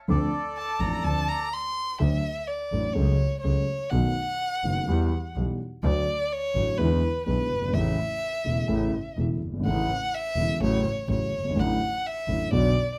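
Tango, dramatic and tense, moving with a rubato feel. A reedy, dark bandoneon carries the melody up front with plate reverb until 1.5 seconds, while a mellow, boxy grand piano with deep bass and a focused, bowed double bass with vibrato hold the accompaniment beneath. A warm violin enters at 0.6 seconds and takes a solo from 2.0 seconds, bowed up front with vibrato, portamento and a soft attack, all captured through close, detailed microphones in light reverb, in this excerpt from a longer piece.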